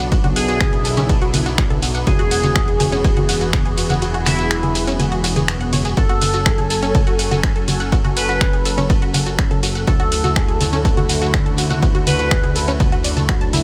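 A lush, thick pad of detuned saws with chorus and phaser opens this driving, cinematic melodic techno excerpt at 123 BPM in F# minor, pumping against a punchy, up-front kick, a fat sawtooth bass, a detuned unison pluck arpeggio trailing tape echo, and a very quiet, evolving drone on F#2. A techno kit with congas, finger snaps, metallic hats and ride plays alongside a grainy shekere in the background, while a juicy, warbling vintage polysynth with resonant filter sweeps carries the melody through chorus and delay from 0.4 seconds. The kick drops out from 4.0 to 6.0 seconds as the chords move from Bm and E to F#madd9 and D under light reverb.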